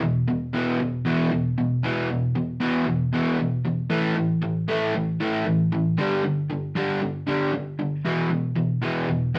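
Rock in E minor at 116 BPM in a straight 4/4, this brief cut from a longer piece has a brooding, driving mood. A single picked electric guitar carries the whole passage alone from 0.0 to 9.4 s, its crunchy, overdriven tone double-tracked and placed up front. The part stays low, moving between E2 and A3 through power chords on E5, A5 and G5 before returning to E5 at 8.1 s. A moderate studio reverb gives the guitar a short tail. The rough rehearsal-room recording lends the sound a raw, unpolished edge.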